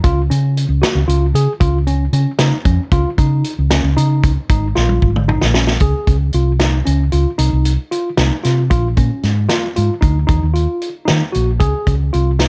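Set in a straight, driving 11/8, this intricate progressive band piece opens with a round, dark hollow-body bass sitting up front beside a vintage acoustic kit with a tight kick, medium-tuned snare and rolled-off top. Over them, a worn, slightly out-of-tune tine electric piano spins arpeggios through a light overdrive and plate reverb for the full 12.5 seconds. A drum fill at 4.8 seconds leads into a second section at 5.8 seconds, where the harmony moves through Dbmaj7, Cmadd11, Bbm7 and Ebm, all inside a dark, warm production cut from a longer piece.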